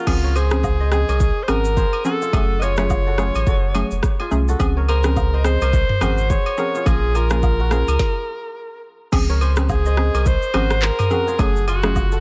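This afrobeats excerpt moves at 106 BPM in 4/4 with a swung sixteenth-note feel in Db major, and its mood is breezy and romantic. A clear alto saxophone carries the solo melody up front, with vibrato and a smooth top in a pop style. Beneath it, a hollow, bouncy square-wave pluck with detuning, a filter pluck shape and chorus fills out the accompaniment. A fingerpicked kora plays a ringing, crisp riff touched with delay. A round sine sub bass sits deep and up front, while an electronic, overdriven afro-pop kit drives the groove with a deep kick, woody snare, rim clicks, handclaps, shaker, toms and crash, and close, dry agogo bells and woodblock tick in the background. The chords move through Dbmaj7, Gbmadd9 and Bbm7 inside a digital ambience, and a stop at 8.0 s comes before a new section begins at 9.1 s.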